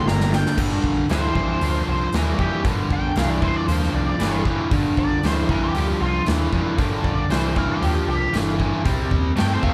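Heavy and brooding, this short cut of blues rock power-trio and southern rock moves at a straight 116 BPM in G minor, opening on a drum fill as a bright, double-tracked stack guitar riff sits up front with a punchy, round hollow-body bass and a big-room acoustic kit with bright cymbals and a medium-tuned snare. Over it, a dark, distorted lead guitar with wah plays a bluesy melody, while a thick, gritty tonewheel organ through a rotary speaker holds very quiet sustained chords. The band plays live together in a large studio with moderate reverb, riding Gm7 before shifting to Cm7 at 8.8 seconds.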